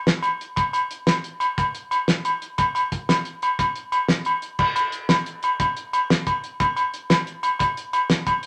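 This highlife groove moves in 12/8 at 119 BPM, counted in dotted quarters, with a straight feel. A cloth-damped, thuddy drum kit holds it down from 0.1 s, sitting up front with a tight kick, a fat snare, hi-hat and dark crash cymbals, its rolled-off top giving a small-room, acoustic character. Agogo bells join at 0.2 s, also up front, their ringing acoustic tone carrying the openness of a live room. A moderate studio reverb gives the pair some space, and the music shifts into a new section at 4.6 s before this short cut from a longer piece ends. The mood is warm and sunny.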